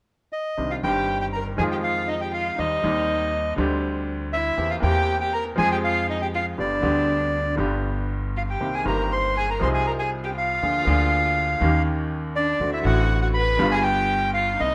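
Passionate and melancholic, this tango excerpt in C minor moves at 120 BPM in 4/4 with a rubato feel. A reedy, up-front bandoneon carries the melody between D5 and C6 from 0.3 seconds, and a bright, polished baby grand piano follows at 0.6 seconds with present, short-sustained accompaniment spanning low bass notes to the middle register. The upright bass enters at the same moment, played pizzicato on steel strings with a woody, thumpy tone. From 0.7 seconds a single bowed violin adds a rich second line in its lower register, shaped by vibrato, portamento and a soft attack. The harmony travels from Cmadd9 and Fm7 through chords such as Gsus4/D and Bb7/D before closing on a tense D7 to G7 turn. Moderate large-studio reverb gives the ensemble a sense of spacious depth.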